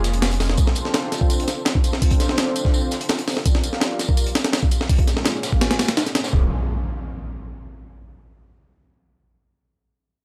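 This short, dry and gritty hardware-recorded excerpt of dark, nostalgic drum and bass in the jungle vein runs at 167 BPM in D minor, cut from a longer piece. Up front, a compressed, pitched-up sampler-style breakbeat kit drives the groove with a thumpy kick, a medium-tuned snare and hi-hat in a small room ambience. Behind it sits a second, crunchy breakbeat kit with a saturated, rolled-off top, its high-tuned snare, hi-hat and tambourine high-pass filtered and smooth in its own small room. A deep, round dub sub bass with a triangle and square wave tone sounds in the low register briefly at the start and again at 6.3 seconds. At that point both kits fall away and an up-front electronic impact rings out until 7.8 seconds.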